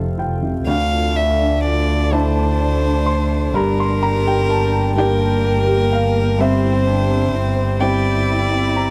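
A rich, airy violin carries the longing, fragile melody of this rubato neoclassical piece in 6/8, entering at 0.7 s with a dark, intimate cello line and dry, rustic marimba arpeggios, over a clear, woody, slightly detuned upright piano, a close, up-front bowed double bass and a warbling, lo-fi tape-like pad with chorus in the background, the whole mix sitting in a moderate studio reverb with a warm production.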